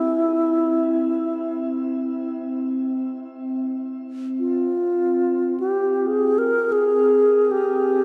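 This world meditative piece unfolds in free time with a spacious, haunting mood, tuned to A4 = 441 Hz and heard as an 8-second section cut from a longer work. A mellow alto flute carries the melody between E4 and Bb4, close-miked and up front with a pure, crisp attack and vibrato, dressed in shimmer reverb and tape echo. Beneath it, a quieter glass harmonica holds a glassy, ethereal C4 texture with a slow, smooth attack and a boxy small-room color under its own shimmer reverb, while the whole recording sits in a vast, echoing cathedral ambience with a cassette-tape character.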